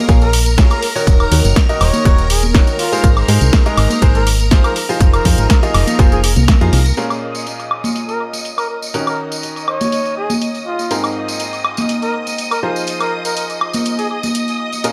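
Echo-heavy and lightly reverberant, this energetic, bittersweet piano house excerpt sits in a digital ambience where analog delay trails the piano, drum machine, percussion and trumpet. A clear, worn grand piano plays the riff over a Bb minor chord cycle, pumping against the sidechain alongside shimmering vintage string-machine violins that hold slow-attack sawtooth chords with ensemble chorus. Up front, a round, dark FM bass with a fast, decaying attack and a layered, punchy electronic kick drive the groove until the kick drops out at 6.6 s and the bass at 6.9 s. From 7.0 s, a filter sweep runs across the drum machine and the strings, while the overdriven analog drum machine's crash, hi-hat, snare and woodblock stay low-pass filtered alongside bright, band-limited tambourine and hard-handed congas. Through it all, a mellow, veiled trumpet with a bucket mute sings a classical-style solo line with light vibrato and a smooth top.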